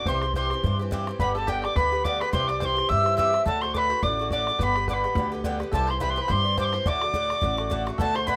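A rough home-demo mix in a wet studio room with a short decay frames this rollicking, bright Celtic reel, cut from a longer piece and moving briskly at 212 BPM in 4/4 with a light swing on the eighth notes, in D mixolydian. Up front, a wooden whistle carries the melody with a pure, warm tone and a chiff on each crisp attack, its sound touched by vibrato yet unsteady and distant. Beneath it, a mellow accordion with a round, reedy single-reed voice and a twangy banjo, played with fingerpicks and sitting in the background, share a second line. An Irish bouzouki supplies picked accompaniment with a metallic ring from its double strings, while a woody upright bass, plucked pizzicato on steel strings, and a damped, tight bodhran join at 0.1 s. The whole passage stays within a single opening section, cycling through C, G and D chords with a warm, lively drive.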